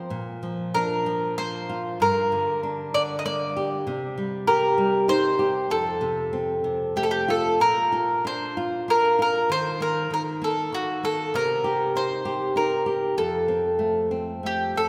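A fingerpicked nylon-string guitar opens this short lullaby fragment, its fresh strings giving a full-bodied, classical accompaniment in Bb major. At 0.7 s a woody mandolin joins up front with the melody, its picked double strings carrying a tender, sleepy tune above the guitar. The piece moves in a gentle 3/4 at around 97 BPM, played with a loose, rubato feel that suits a child's bedtime. The harmony moves through Bb, Gm, Cm7 and F, and a second passage from 7.6 s turns through Bb, Eb5 and Cm before settling on F. Both instruments sit close and warm, while a long, wet church reverb surrounds them with the airy resonance of a large hall.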